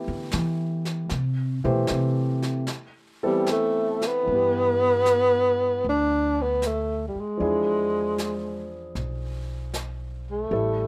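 This intimate, late-night jazz ballad in G major swings gently at 77 BPM in 4/4, opening with a woody, thumpy pizzicato upright bass solo up front over chords from a smooth, vintage concert grand piano whose action noise can be heard. Airy brushes on snare and hi-hat come in almost at once. At 3.3 seconds a dark, breathy tenor saxophone takes the melody up front, whispering in subtone with scooped notes and vibrato, while the bass solo runs until 4.3 seconds and the harmony moves from G69 through Am7 and Esus4 to G6 and E7b9 under light reverb.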